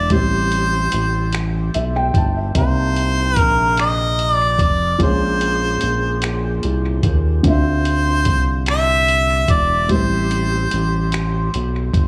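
A harmonica, grand piano and round analog bass open this slow, yearning late-night R&B excerpt in 6/8 at 49 BPM. The up-front harmonica carries a classical-style solo line with light vibrato, and dub echo trails both it and the short-sustained piano, which adds a fill from 1.3 to 2.6 seconds. Beneath them, the deep, mellow bass blends sawtooth and sine tones with ring modulation, while a dusty, compressed sampler-style kit of finger snaps, hi-hat and thumpy kick brings a gritty, tape-warm grain as the chords move from Am9 through Cm7, Bbm9 and Dm9 back to Am9 in an echo-heavy mix with small room ambience, the harmonica stopping at 11.5 seconds.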